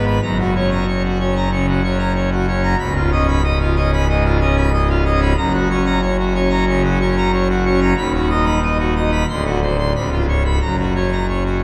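Full pipe organ opens this majestic, jubilant classical organ toccata in F# major, moving at a straight 93 BPM in 4/4 and tuned to A4 = 436 Hz. The solo organ sits up front with brilliant mixtures and a romantic voicing that spans C#1 to C6, bathed in a church reverb lasting 3.1 seconds and heard from further back in the room. Over this 11.6-second cut from a longer piece, the harmony moves from F# through C#9, B/D#, D7 and C#7 before settling back on F# at 10.6 seconds.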